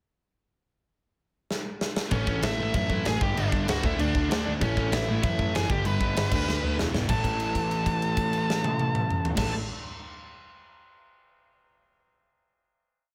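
A punchy, up-front rock drum kit in a big room kicks off this rowdy, upbeat punk rock piece at 193 BPM, entering at 1.5 seconds with a fill before a dark, high-gain lead guitar with distortion and delay takes up a motif-based melody, partly doubled in octaves, at 2.1 seconds. Beneath it, crunchy and raw garage guitars drive eighth-note power chords in the background, one bright double-tracked guitar rings very quietly, and an earthy, bowed double bass with light vibrato pushes eighth notes through a quick run of A, G, D and E chords. After a second drum fill, everything lands on a final A5 chord at 7.1 seconds, with a held note ringing over a light reverb.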